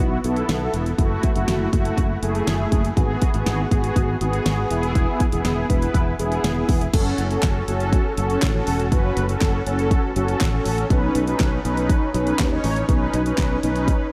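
Cool and nocturnal, this synth-pop excerpt moves at 121 BPM in a straight 4/4, centred on F# dorian. Mellow synth brass carries the accompaniment up front, its round, detuned sawtooth tone coloured by chorus, vibrato and a filter sweep, with a fast attack and sustained notes. Beneath it, a sustaining fretless electric bass adds a growly, direct low end treated with ensemble chorus. A pop drum kit joins at 0.2 seconds with a punchy kick, fat snare, warm hi-hats, handclaps and crash cymbal, an electronic, layered sound placed close in front. The chords move from Bsus4 through F#m7, G#m7 and E before settling onto F#m at 6.9 seconds and Badd9, all inside a dreamy mix soaked in a huge ambient reverb.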